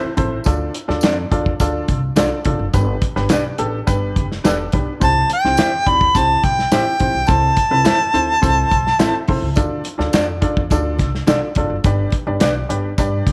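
Opening on a brief harmonica blip over worn, slightly detuned upright piano and dark, woody pizzicato upright bass, this uplifting, uptempo 1960s-style soul excerpt at 106 BPM soon adds an up-front drum kit with a tight kick, damped congas, a jingly tambourine and slightly broken-up guitar stabs through a small old amp with spring reverb, before the harmonica returns from 5.0 to 9.3 seconds with vibrato, tongue slaps and scooped jazz-style notes as the piano slips in a fill over a Dm, G, C, Am/C progression in a small, lightly reverberant room.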